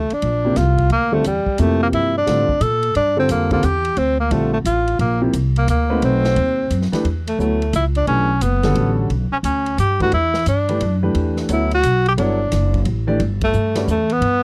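A dry, close 1970s-style studio sound frames this intense, hypnotic modal jazz excerpt in a swung 3/4 at 176 BPM, where a breathy, whispered tenor saxophone carries the melody up front with vibrato and scooped notes over a woody, growly pizzicato upright bass, clear concert grand piano accompaniment and a polished big-band drum kit with punchy kick, ride and hi-hat, shifting from G dorian to E dorian at 7.0 s before a band accent at 13.4 s.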